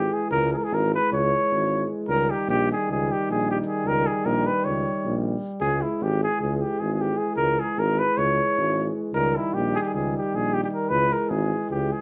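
Virtuosic and restless, this Balkan brass band passage, cut from a longer piece, runs at 306 BPM in eighths through a straight 9/8 in C# dorian sharp4, tuned to A4 = 443 Hz: a mellow, smooth-topped trumpet carries the melody up front with light vibrato, a clear, punchy trombone with light vibrato and a vintage-toned euphonium set in the background supply the accompaniment, and a present, warm tuba holds the bass, all in classical style. The chords shift between C#m and D#, and the band sits in a moderate studio reverb, heard from further back in the room.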